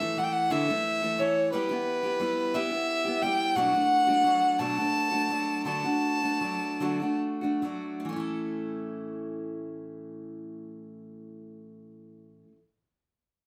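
A gentle, swaying six-eight pulse carries this peaceful acoustic folk piece, played live by a small group in a modest room with a short, natural ambience. A bowed fiddle carries the melody up front, its clear, focused tone touched with light vibrato and recorded close enough to hear a single player's bow. Beside it, a picked steel-string dreadnought guitar provides the accompaniment, bright and full-bodied with the ring of fresh strings, moving through Em/G, Bm7 and D before settling on A. From 3.6 seconds the music gradually slows, giving the phrase a warm, unhurried close. The fiddle falls silent at 7.2 seconds, leaving the guitar alone until it stops at 12.6 seconds in this section cut from a longer piece.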